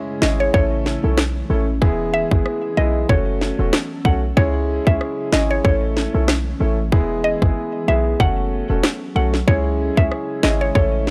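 A boxy concert grand piano and an ethereal, detuned pad, softened by ensemble chorus and pulsing with sidechain pumping in the background, open this hypnotic, bouncy dancehall excerpt over a looping C#m, A, E, F#m progression. At 0.2 s a woody, round FM mallet pluck takes the melody through chorus and tape echo. Alongside it a punchy sine 808 bass and an electronic island pop kit with a tight kick, sharp snare and rim click sit up front, all in a dry, gritty hardware recording with little reverb.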